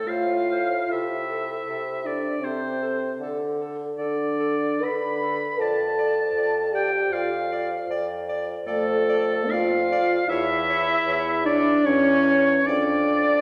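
In an unhurried 3/4 at 77 BPM with uneven, rubato beats, this solemn, elegiac slow romantic movement for wind quintet, cut from a longer piece, settles into D minor from 7.9 s. A hollow silver flute with vibrato and a crisp attack carries the melody from the background, while a clear oboe with light vibrato sings the second line up front, a mellow French horn and a bright clarinet supply accompaniment, and a roomy bassoon holds the bass. The ensemble sits in a church or concert hall with a recital-hall reverb of 1.8 s.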